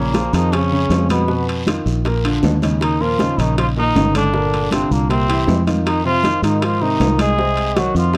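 A dry, close recording with a 1970s studio feel and a touch of light reverb carries this fiery, sophisticated Afro-Cuban jazz excerpt in Bb minor at 157 BPM. Up front, a brilliant, buzzy trombone with a metal mute leads the melody, while a growling tenor saxophone carries a second line, its breathy subtone, vibrato and scooped notes adding grit. A polished grand piano comps through chords such as Bbm7, Bmaj7#11 and Gm7 to C7, and a punchy, dark fingered electric bass sits prominently beneath. From 0.1 s, ringing high-tuned congas and round low-tuned bongos play in the background, joined by metal-shelled timbales and a faint, raspy guiro.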